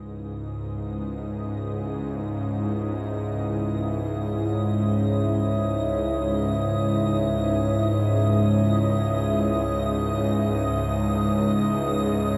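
Dark ambient drone in free time and C# minor, this unsettling, ominous fragment of a longer piece rests on an up-front, string-like bowed drone with vibrato beneath a deep, moody analog pad of sustained chorused chords and a faint crystalline glass pad, the two pads fading in across all 12.4 seconds on a single C#m chord, all bathed in a huge, wet reverb.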